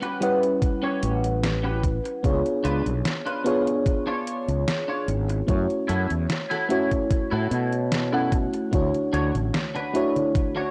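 Vaporwave with a faded, woozy mood, this short excerpt rests on a soft, round FM electric piano bathed in analog chorus and tape echo, while a twangy, clean electric guitar riff sits further back through a low-pass filter and its own tape echo. A detuned 8-bit drum machine supplies congas, hi-hat and a medium-tuned snare, joined at 0.6 s by a thumpy electronic kick up front, and a growly fretless bass with tube saturation enters at 1.0 s and stops at 9.5 s. The dry, gritty hardware sound, with transformer saturation and cassette-tape character, colours the progression from A13 through C#7b9 and F#m7 to Dmaj7.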